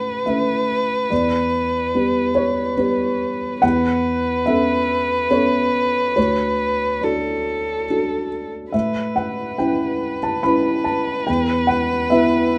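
A close, intimate sound greets the ear, with a felt-muted upright piano and a single bowed violin both placed up front in a light reverb. This tender neoclassical fragment for piano and strings moves at 71 BPM in 3/4 with a rubato feel, in A mixolydian and tuned to A4 = 441 Hz. The upright carries the accompaniment across a range from low D2 to B5; its tone is dark and boxy under thick felt, with audible action noise adding to the closeness. Above it, the violin sings a narrow melody between A4 and B4, focused and smooth on top with vibrato. Both instruments play together from 0.0 to 12.6 seconds, moving through Aadd9, Em, Aadd9/E and D before settling back on Aadd9 and closing on E5 in this short passage lifted from a longer piece.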